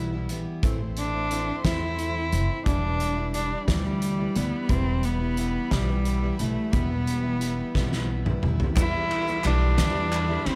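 Yearning and bittersweet, this slow indie folk excerpt in E minor moves at 59 BPM in a straight 6/8, with a nasal, boxy bowed cello carrying the melody up front over a woody, growly pizzicato upright bass and a loose drum kit with a fat snare, punchy kick and dark cymbals. A dark, full-bodied fingerpicked steel-string guitar sounds very quietly until 2.7 s, while a picked plugged-in parlour guitar with fresh strings plays on and a soft-attack sul tasto chamber string section holds chords in the background. After a drum fill at 7.8 s, the arrangement builds at 8.8 s as a worn, slightly detuned upright piano, crisp band-limited group handclaps and a grainy tube shaker join very quietly, all in a dry sound.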